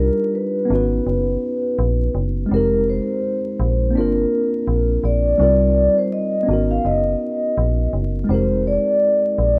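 Lo-fi hip hop at 83 BPM in 4/4, this hazy, reflective passage in F dorian is taken from a longer piece and rides a 60% swing on the sixteenths. A vibraphone played with soft mallets carries the melody between Bb4 and F5, its metallic ring and slow motor vibrato softened by a low-pass filter and plate reverb, with a boxy small-room colour. Alongside it, a mellow tine electric piano supplies the accompaniment, sounding worn and slightly out of tune yet clean and direct, dulled further by cassette tape and a low-pass filter. A digital FM bass with a fast attack and decaying notes holds the low end from F1 to C2, sitting up front with the other two parts, and all three play through the full 9.6 seconds. The harmony moves through Cm11, Abm11, Fm11 and Gm7, returning to Cm11 at 5.4 seconds, while the whole mix is wrapped in a damp small-room reverb, warbling old tape with pitch drift, and vinyl crackle.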